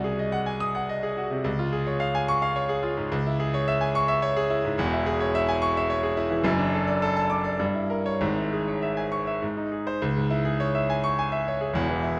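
Stormy and passionate, this short passage from a virtuoso classical piano study unfolds in a flowing triple metre with an elastic, rubato feel. A clear concert grand piano plays alone from start to finish, sitting up front with a natural tone and a deep bass that reaches from E1 up to Eb6. The harmony begins on a dominant chord that settles briefly into a major tonality before turning darkly to C# minor at 3.1 seconds, then passes through restless chromatic colours, including a diminished seventh, on its way to a G# chord. At 10.0 seconds a new section begins, returning to C# minor as the fragment breaks off from the longer piece. A lush recital hall reverb surrounds the instrument, lending the turbulent writing a resonant, spacious glow.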